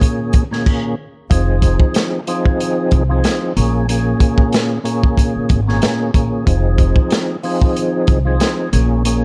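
Reflective and moody, this short boom-bap hip-hop cut in F minor sits at 93 BPM with a lightly swung 16th-note feel, moving between Bbm7 and Fm7 in a dark, small-room production. A gritty, saturated breakbeat kit with a tight kick, a medium-tuned snare and dark cymbals sits up front beside a fat, lightly overdriven tonewheel organ whose key click, percussive attack, chorus vibrato and slow rotary speaker give the chords a rich glow. After an opening break with a brief stop at 0.7 seconds, a woody, growly pizzicato upright bass enters at 1.3 seconds.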